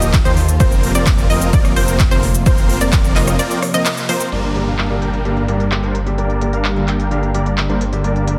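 A festival progressive house drop in G minor at 129 BPM opens this anthemic, emotional passage: huge, bright supersaw chords carry the riff over a thick, saturated detuned saw bass, while an overdriven, punchy kick, crisp hats, claps and cymbals from a big-room kit drive the groove, a short-decaying unison pluck arpeggio echoes above, and a very quiet, airy pad sustains through Ebadd9 and Fsus4. The kick stops at 3.0 seconds and the pluck at 4.3 as the harmony settles on Gm, where a smooth, vintage grand piano enters at 4.5 seconds and a downlifter sinks into the background. Sidechain pumping breathes through the supersaws, bass, pluck and piano, all set in light digital reverb with a dense, heavily limited modern master.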